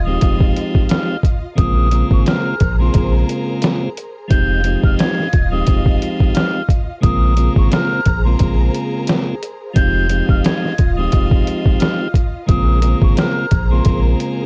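This is a reflective, dark boom-bap hip-hop excerpt in F minor at 88 BPM, with a light 16th-note swing and a harmony that alternates between Fm9 and Bbm9. A pitched-down, muffled sampler-style drum kit sits up front, its thumpy kick, medium-tuned snare and hi-hat compressed, while a deep, full sub bass with a sine-and-triangle tone and fast attack sustains low notes beneath it. A piping, scooped tonewheel organ fills the middle register with key click, light overdrive, a stopped rotary speaker and cassette-tape coloring. High above, a breathy, mellow concert flute carries the melody with vibrato, a crisp attack and an unsteady quality, trailed by analog delay. Lush, bowed symphonic strings hold soft-attacked, expressive chords. The whole mix is dry and gritty, with a hardware-and-cassette character and little reverb across its 14.5 seconds.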